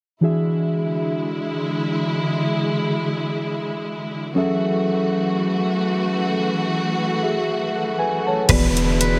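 Lightly reverberant and swung, this moody, sensual contemporary R&B excerpt opens on muted, felt-like synth keys with a chorus sheen, sitting up front beside a lush, woody studio string section holding dark sustained chords with vibrato over E7 and F#m7. At 8.5 seconds the drums and bass arrive: a booming analog drum machine with deep kick, metallic hats and crash cymbal, a clean sine-toned 808-style bass, and a picked, compressed electric guitar recorded direct, carrying the melody through ensemble chorus and tape echo. An electronic downlifter follows, and a brilliant, silvery steel-string zither played with fingerpicks rings out at 9.0 seconds as the cut ends.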